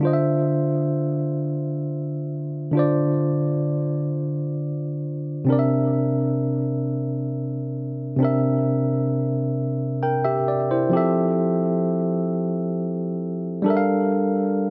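A slow 6/8 sway at 44 BPM, counted in dotted quarters, carries this sultry, late-night R&B snippet, where a clean tine electric piano sits up front through its built-in speakers with tape echo and light reverb, playing alone across the full 14.7 seconds from C3 to G5 and moving from Dm7 to C9, then shifting at 10.9 seconds to Fmaj9 and Gm9.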